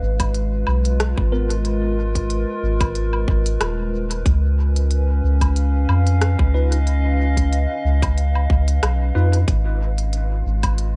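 Ambient dub at 92 BPM in G# dorian with a deep, hazy mood, cut from a longer piece, where a warbling, detuned tape-like pad with chorus and built-in reverb holds sustained chords (G#m69, C#9, G#m6) over a round, up-front sub bass with tube saturation, a tight electronic kick, and an organic electronic kit of smooth hi-hat, rim click and woodblock through dub echo, while a clean tine electric piano with phaser and dub echo drops a brief stab at 1.3 seconds and returns from 6.5 to 9.4 seconds, all in a dry, dark mix.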